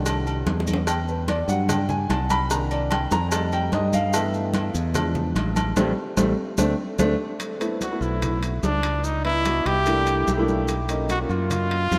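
A close-miked jazz trumpet with vibrato takes the solo melody at 7.8 seconds, entering after a lively, sunny Afro-Cuban jazz groove has been led by a smooth, vintage grand piano and a growly, up-front fingered electric bass. Ringing congas, agogo bells and timbales and grainy maracas carry on throughout, while tight, high-tuned cowbell and bongos play until 7.1 seconds. A brief drum fill comes early in the piano's opening solo passage, and another fill along with a band accent marks its close. The whole piece is bathed in a vast, echoing cathedral reverb and cut from a longer performance.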